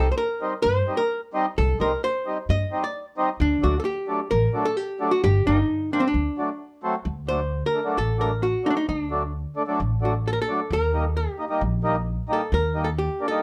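A soulful, bittersweet klezmer piece opens with a clean, hollow-body archtop guitar carrying the melody up front, backed by a reedy, mellow accordion and a woody pizzicato upright bass. At 7.1 seconds the guitar moves into a solo over accordion and bass, and the bass stops at 13.1 seconds, just before this cut from a longer piece ends. Light reverb and a dark production shape the overall sound.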